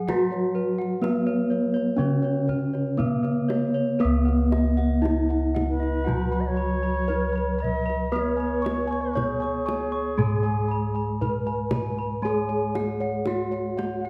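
A bronze metallophone carries the melody, its ringing tone lifted by a slapback echo, while a second metallophone plays the accompaniment and a bright, horn-struck metallophone and mellow bossed gongs with padded beaters spin arpeggios above. Low bossed gongs hold the bass and a tight, soft-handed kendang keeps time in this shimmering, ceremonial Javanese gamelan excerpt, set at a stately 58 BPM in C# slendro. At 5.7 s a pure, bright bansuri adds a second line with expressive vibrato and its own echo, all within a dark production and a reverberant recital hall.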